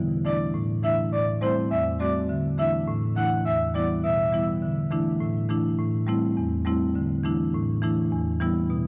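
Dancehall at 103 BPM in a straight 4/4, this short excerpt cut from a longer piece feels summery and bouncy. A marimba struck with medium hard mallets carries the accompaniment from start to finish, its rosewood bars sounding woody and full, close-miked and dry and sitting up front. A breathy, flute-like synth lead enters at 0.2 seconds and carries the melody until 4.5 seconds, its soft attack and sustained tone colored by chorus, vibrato and an analog delay. The harmony cycles through Dsus2, Am7 and Em, returning to Dsus2 between each change. Light reverb and a small room ambience surround the whole, and the gritty hardware recording carries the texture of cassette tape.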